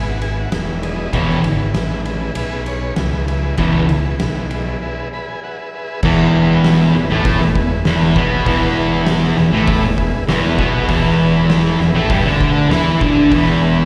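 Heard through a venue's PA with a light recital-hall reverb, this rowdy, raw garage rock excerpt sits at 99 BPM in a straight 4/4 in E major. A buzzy, heavily vibrato-laden combo organ holds overdriven sustained chords and opens with a fill alongside a fuzzed, fingered electric bass, with an oversized, low-tuned kit entering just after, bringing a fat snare, punchy kick and dark, gritty cymbals. From 1.1 seconds a thick, double-tracked fuzz guitar riff with slapback echo sits up front, and the organ takes another fill during a break at 4.8 seconds before the music moves into a new section at 6.0 seconds.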